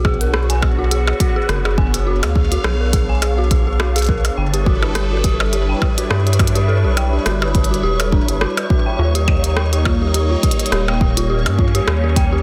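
A lightly swung sixteenth-note groove in 4/4 drives this glitchy, melancholic IDM passage, cut from a longer piece, with a deep electronic kick and a clicky, tape-toned drum kit of hi-hat, percussion blips and rim click, both set in a small room, with soft clipping on the snare and digital delay on the kit. Up front, a rubbery square-wave bass sounds hollow, bouncy and saturated, its resonant filter pluck and moving notch giving each note a dark bite. A dark, detuned FM synth bell spins eerie, inharmonic arpeggios through chorus and digital delay, while a phased analog pad holds swirling, evolving sawtooth chords that move from Bm to G6 at 4.4 seconds and D# at 9.0 seconds. From 0.2 seconds a faint, flickering granular texture drifts in the background on a single sustained note, bathed in its own reverb. The whole is lightly reverberant and digitally ambient, with a dense, heavily limited modern master.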